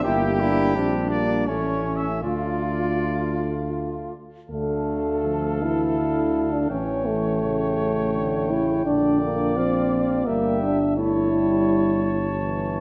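A moderate scoring-stage reverb gives this heroic, solemn classical brass quintet a spacious, resonant setting, in a rubato triple metre cut from a longer piece. The distant, roomy trumpet carries the melody above a present flugelhorn second line with vibrato, while a mellow, vintage-toned French horn and a close-miked trombone sitting in the background supply accompaniment. Up front, the dark bass trombone anchors the bass with light vibrato and a soft attack; the music moves into a new section at 4.5 seconds, and the horn drops out at 12.4 seconds.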